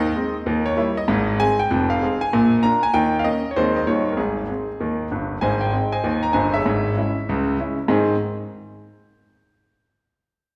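Stride jazz played by a lone concert grand piano, this short cut from a longer piece feels playful and swinging, with a firm swung lilt in 4/4. The piano sits up front with a brilliant, polished tone, deep bass and long sustain, moving through chords such as Eb7b9, Fm and Bb7 before settling back on Ab at 7.9 seconds. A wet recital hall reverb surrounds it, lending the sound the air of a church or concert hall.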